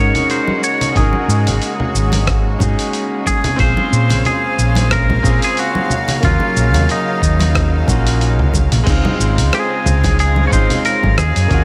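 A wistful, smooth sunset chillout excerpt at 91 BPM with a light 16th-note swing opens on a clean, twangy picked electric guitar melody trailed by delay, over a brilliant, polished grand piano, distant, intense bowed strings with light vibrato, and a round, dark hollow-body bass sitting up front. A gritty, tape-warm soul sampler kit with hi-hat, rim click, shaker and crash arrives almost at once, soft-handed saturated congas sit in the background, and a thumpy compressed electronic kick joins at 1.0 s, the kit and kick both re-recorded in a large room. The lush Ab9sus4, Bbm9 and Ebm9 harmony settles onto a Dbmaj9 at 8.9 s, wrapped in light digital reverb.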